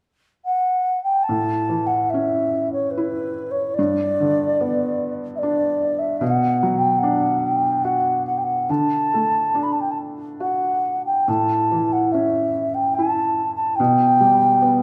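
A wet recital-hall reverb surrounds this wistful, nostalgic Celtic slow air, cut from a longer piece and moving freely in 3/4 at around 68-76 BPM in A mixolydian. A hollow, woody baroque flute carries the melody from 0.4 s, up front, with a pure tone, vibrato and tongued notes. At 1.3 s a felt-muted upright piano joins with soft, intimate chords of short sustain, moving through A, G, Bm and D before returning to A and G/B.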